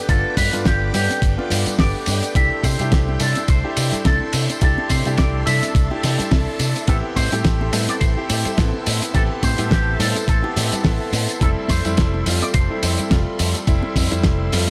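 Nu-disco with a feel-good, groovy character, this short cut from a longer piece moves at 106 BPM in 4/4 with a light swing on the sixteenths, sitting in C major over a G7, C6, Am7 and Fmaj7 progression. A thumpy, sampler-style electronic kick, tape-warm and re-recorded in a large room, anchors the groove alongside a damped 70s kit whose fat snare, hi-hat, ride and tambourine sound dark and rolled-off. Ringing tambourine and congas played with soft hands sit close but in the background. A bright, amped fingered bass with an envelope filter and tube saturation carries the low end. Meanwhile a clear, vintage concert grand piano with deep bass plays the accompaniment through sidechain pumping, and a lush sawtooth string machine with a sub octave and ensemble chorus holds soft-attack chords behind it, also pumping. From 0.1 to 13.4 seconds a clean, twangy picked electric guitar with an envelope filter, lush chorus and analog delay takes the melody, all within a dry, gritty hardware recording with little reverb.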